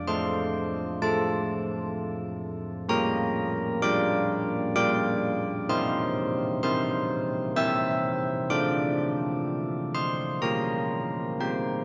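This classical tune for church bells is a serene yet festive piece in a slow 3/4 at 64 BPM, with a straight feel and tuning set to A4 = 439 Hz. A solo carillon carries the whole passage from 0.0 to 11.8 s, ranging from A3 up to E6. Its bronze tone is bright and full, with a distinct minor-third overtone and the character of a worn iron clapper. The bells sound close-miked, dry and up front, set within a wet cathedral reverb with a long 5.2-second decay and an overall dark, warm production. The harmony moves from F/A through Gm7/Bb and C7 to Dm before returning to Gm7/Bb. The recording is cut from a longer piece.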